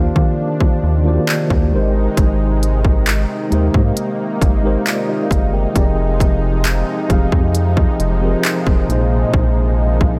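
Romantic and smooth, this contemporary R&B passage drifts through Ebmaj13, Abmaj7, Fm9 and Bb9sus4 chords on a mellow, clean tine electric piano, while a lush, detuned unison pad with chorus sustains thick, nasal chords beneath it. A rubbery, hollow square-wave bass with a resonant filter pluck sits dark and up front, joined at 0.2 seconds by a produced trap kit of hard-clipped kick, crisp hi-hats and handclaps. The hats drop out at 9.3 seconds, and the dry mix keeps every layer close and intimate.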